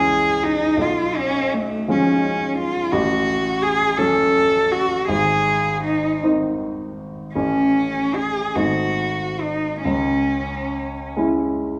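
A wet recital-hall reverb with a 1.5-second decay surrounds this short romantic classical duo for cello and grand piano, cut from a longer piece and tuned to A4 = 439 Hz. The mood is melancholic and solemn, moving in a slow, rubato 6/8 at roughly 45 to 59 dotted-quarter beats per minute. Up front, a single bowed cello carries the melody between A3 and A4, its expressive line shaded with vibrato and portamento and a warm, close tone. The grand piano supports it from G#1 to E4 with a present, polished sound whose notes sustain only briefly. The harmony moves from C#m through C#7/B, F#m/A, G#, A and G#7b9 before settling back on C#m, with the cello falling away at 11.1 seconds and the piano closing at 11.8 seconds.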